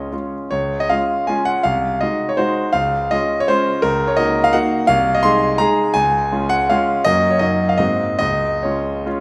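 A clear, intimate grand piano sits up front with audible action noise, playing a graceful, rustic romantic classical dance in 3/4 with dotted rhythms and rubato at 135-179 BPM in Db major, ranging from C2 to C6 through chords such as Ab7/C, Ebm7/Db, Gb and Ab9 before settling on Db at 8.2 seconds, all carried by a wet concert hall reverb in this short piece cut from a longer work.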